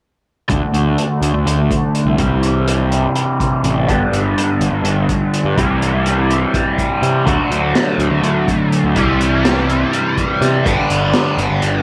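Psychedelic rock excerpt in 7/8 at 248 BPM counted in eighths, kaleidoscopic and trippy in D mixolydian, where a bright, double-tracked cranked stack guitar riff with overdrive, flanger and a filter sweep runs from 0.5 to 11.8 seconds over a round, fuzzed picked electric bass and a gritty, saturated breakbeat kit with a punchy kick and high-tuned snare, all moving through D, C and G in a lightly reverberant studio room.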